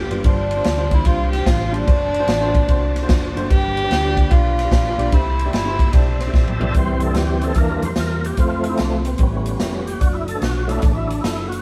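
A swung 148 BPM 4/4 groove drives this reverent, uplifting uptempo gospel piece in C major, with a punchy, up-front big-band drum kit, a round hollow-body electric bass and a woody upright piano underneath a gritty, overdriven tonewheel organ turning through a slow rotary speaker with chorus vibrato and key click. A dark, intimate violin carries the melody with light vibrato and an airy bow until 6.6 seconds, while a drum fill starting at 6.3 seconds hands off to an organ solo at 6.8 seconds, and a very quiet, mellow French horn section enters with sustained chords at 6.7 seconds. The band sounds live in one room with light reverb, and the chords move from G7sus4 through C6 to a closing run of F, A7 and D/F#.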